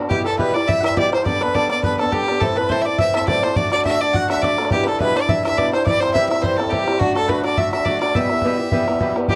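A dry, close 1970s-style studio sound with light reverb frames this driving, spirited Celtic reel in E minor at 209 BPM, cut from a longer piece and played with a gentle swing on the eighths. Up front, a biting, airy-bowed fiddle with light vibrato carries the melody over a boxy, dark fingerpicked swing-style guitar, while a very quiet, sweet, reedy accordion and a bright, woody double-strung mandolin in the background share a second line. An open, boomy bodhran adds percussion with a live-room ring as the chords move from Em through Gadd9, Am, D, Em7, C and D back to Em.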